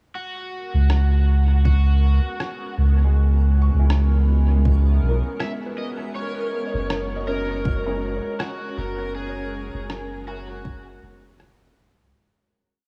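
A bright, overdriven slide guitar opens this meditative, hazy ambient dub piece at 0.2 seconds, playing a motif-based melody of call phrases through analog chorus and dub echo, soon joined by a dreamy backwards swelling texture holding a high note and a soft organ-like pad of slowly shifting chords that fades in behind it. An up-front, round sub bass carries a dub-style line beneath a sparse, muffled rim click with dub echo and a deep, overdriven kick in the background, with the swing felt on the sixteenths. From 3.0 seconds a felt-muted upright piano drifts through four slow, intimate arpeggio loops of unequal length with tape echo, and very quiet filtered chord stabs with a phaser appear at 7.3 seconds before the whole piece fades out.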